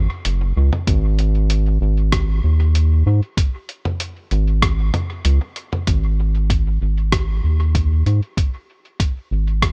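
Ambient dub with a spacious, deep mood, in this short excerpt cut from a longer piece, opening on a round analog bass that sits dark and up front, its sustained, wave-folded tone evolving over the low register. A lo-fi sampler-style drum kit of muffled hi-hat, rim click and toms enters at 0.2 seconds, set back in the mix and trailed by dub echo, while a compressed, thumpy electronic kick joins at 0.9 seconds. The sound is dry, with little reverb, and the music shifts into a new section at 5.9 seconds.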